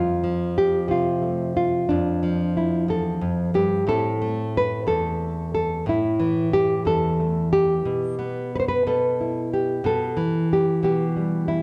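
Wet recital-hall reverb surrounds this hopeful, peaceful folk excerpt in 6/8 at 60 BPM, where a dark, full-bodied, thumb-plucked nylon-string guitar sits up front and plays alone, ranging from E2 to C5 as it moves from F to Am at 3.9 seconds and Em/B at 7.8 seconds.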